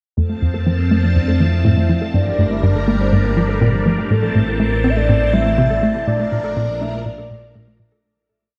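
From 0.2 s, all five parts enter together in this expansive, mysterious piece of ambient, sequencer-driven space music at 122 BPM: a tight, punchy sequencer bass drives a repeating 16-step pattern over an evolving analog drone and a swirling, vintage string machine carrying sustained chords through phaser and ensemble chorus. A dusty, lo-fi pluck warbles in the background with a 12-step loop that drifts against the bar, while a round, octave-layered synth lead with tremolo and vibrato sings a free-flowing melody over chords moving from F through Gm and Am to Bb. Shimmer reverb, analog delay and a moderate plate reverb make the mix echo-heavy and spacious, and the whole piece fades out from 5.4 s to its close at 8.0 s.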